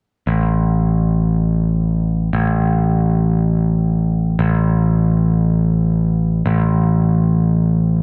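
Rock in free time, this euphoric, hopeful fragment cut from a longer piece features a growling, picked electric bass with punchy, overdriven bite sitting up front from 0.3 to 8.0 seconds, around a low A1, set in the wet reverb of a large studio as if the band were playing live in one room.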